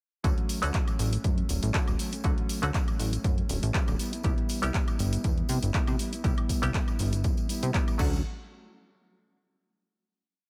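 A punchy, sawtooth-edged analog bass with a fast filter pluck drives this feel-good, funky filtered disco house piece with a syncopated line, sitting up front beside a four-on-the-floor electronic kick that was re-recorded in a small room. A muted, nasal, twangy clav run through a phaser and a combo amp pushes close-voiced chords, while a dark, clean electric guitar strums upper chord shapes in sixteenths over a Dmaj7 to Cmaj7 change. The bass, clav and guitar pump against the kick, as do the bright hats, clap, shaker, woodblock and crash of the layered house kit and a saturated background tambourine, all in a dry mix that drops from 0.2 seconds before a final hit at 8.2 seconds.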